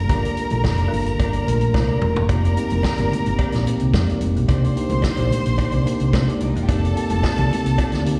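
Danceable and sultry, this disco groove moves at 109 BPM in a straight 4/4, cut from a longer piece and heard as a live gig through the venue's PA with a recital hall's reverb around it. A dark, round hollow-body short-scale electric bass sits loudest in the mix, fingered low from E1 to C3, while a vintage drum kit with a punchy kick, medium-tuned snare and rolled-off top carries a gritty 12-bit sampler edge. A mellow, clean tine electric piano supplies the accompaniment with a slapback echo, and a lush bowed violin section with vibrato and a smooth top carries the second line, also touched by slapback. High-tuned, ringing congas played with soft hands sit very quietly in the mix, and a metallic cowbell with its own slapback echo sounds distant, as if from a large room in the background. A drum fill from 1.7 to 2.3 seconds leads out of the opening Gm9 into a section that cycles F7sus4 and Cm7 chords, with the bass dropping out at 8.0 seconds.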